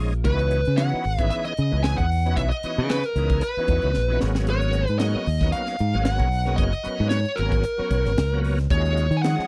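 Organ and bass open this driving, funky electric jazz fusion excerpt at 114 BPM in 4/4 with a light sixteenth-note swing, the bright tonewheel organ shouting through a slow rotary speaker and chorus vibrato while the fingered bass sits direct and up front. A crisp drum kit with a high-tuned snare, punchy kick, hi-hat and splash cymbal joins at once, and from 0.3 seconds a smooth overdriven guitar carries the picked melody over minor eleventh chords moving from Dbm11 to Abm11 and Ebm11. A short drum fill at 4.0 seconds breaks up the groove, and the close, dry 1970s-style studio sound keeps each part present.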